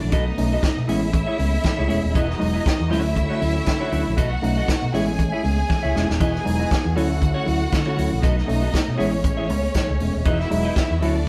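A swung sixteenth-note groove at 118 BPM in 4/4 drives this short, joyful disco excerpt in E major, cut from a longer piece. The vintage drum kit sits up front with a punchy kick, a medium-tuned snare and hi-hat, its rolled-off top and small-room character keeping it natural, and it plays a brief fill from 5.7 to 6.2 seconds. Beneath it, the fingered electric bass carries the low end with a round, amped tone, while a dark, picked clean electric guitar and a worn, slightly out-of-tune tine electric piano fill in the accompaniment. A clear, focused string section bows a second line with vibrato, and a fat, lightly overdriven tonewheel organ holds sustained chords in the background, its key click, percussion, chorus vibrato and slow rotary speaker adding shimmer. The harmony cycles through B7, Amaj7, Emaj7 and Dmaj7, and the whole band sounds as if playing live together in a stone room with a moderate reverb that gives the celebratory mood a lively sense of space.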